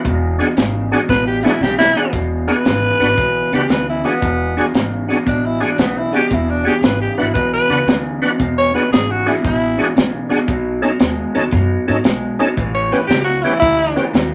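A raspy, growling tenor saxophone solos up front in this gritty, soulful electric blues shuffle excerpt, backed by a slightly broken-up electric guitar riff through a small old amp with spring reverb, woody pizzicato upright bass, a compact cocktail drum kit with a punchy kick and a fill at 1.1 seconds, and a thick, overdriven tonewheel organ with slow rotary speaker and chorus vibrato entering at 0.4 seconds, set in a wet studio ambience.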